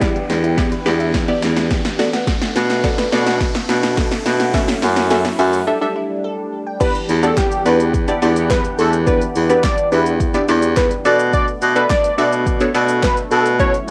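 This dance-pop excerpt at a steady, straight pulse feels bittersweet yet confident, opening with a build-up in which a deep house drum kit plays a fill of deep kick, punchy snare, handclaps, hi-hat and shaker, its overdriven, up-front sound re-recorded in a small room. A breathy baritone saxophone carries the bass line with mellow vibrato, sitting up front yet roomy and distant, while crisp, detuned wavetable chord stabs and an evolving, resonant pad in the background both pump to the sidechain through a low-pass filter and a cassette-tape haze. A very quiet, glassy wavetable pluck spins arpeggios through the opening half, and a background riser builds until it stops at 5.7 seconds, leaving a brief break over an A7sus4 chord. At 6.8 seconds the drop arrives with a fat, sawtooth analog lead carrying the melody, thickened by a sub octave and set in plate reverb and tape echo. The chords move through Em7, Bm7 and F#m7 before settling back on Em7 and Bm7, and the whole piece has the lightly reverberant, lo-fi character of a home recording on cassette.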